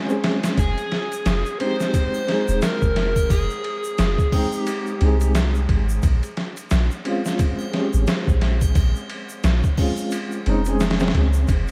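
A felt-muted upright piano opens this melancholic, brooding trip hop excerpt, its soft, mellow, intimate chords carrying audible action noise along with tremolo and tape echo. Almost at once a gritty, pitched-down sampler-style drum kit arrives up front, its overdriven, compressed sound built on a thumpy kick, a medium-tuned snare, hi-hat and ride cymbal, all with a lazy swing on the sixteenths. Egg shaker, triangle and a group handclap sit in the background with a small-room acoustic feel. From 0.6 seconds a deep, round 808-style bass sits up front with soft, sine-like notes that strike fast and decay into darkness, while a dark, overdriven electric slide guitar traces a short, fingered melody through tape echo until 5.3 seconds. The whole mix is dreamy and soaked in lush hall reverb, with vinyl crackle adding a vintage haze.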